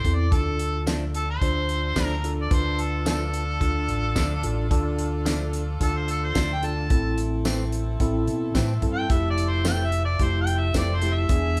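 A straight-eighth groove at 109 BPM in 4/4, with a slight sixteenth-note swing, drives this brooding, soulful blues, anchored up front by a dry, damped 70s drum kit (fat snare, tight kick, hi-hat and tambourine) and a dark, round fingered electric bass. Over it, a mellow, vintage harmonica with overdrive, light vibrato and scooped notes takes a jazz-style solo throughout, while a tine electric piano plays accompaniment through its built-in speakers and a distant, roomy horn section holds tight sustained chords in the background. A bright, twangy guitar recorded direct adds clean, compressed picked stabs from 0.9 s as the chords move from Dm to Am and Fmaj7 in a large studio room, in this section cut from a longer piece.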